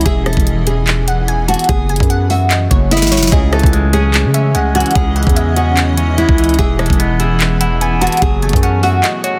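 A dense, heavily limited modern master with digital ambience carries this melancholic, eerie trap excerpt at 147 BPM in a half-time feel, in C# minor, moving through E, F#m and C#madd9. Up front, a trap kit with knocking kick, sharp snare, bright hats, handclaps and rim clicks sits beside a growling, buzzy 808-style bass, while a fingerpicked nylon-string guitar carries the melody through delay over a blurred, evolving granular cloud pad and a crystalline wavetable pluck, with chorus and delay, in the background. A clean, twangy electric guitar joins at 3.3 seconds after a drum fill, and a break arrives at 9.0 seconds as the bass drops out.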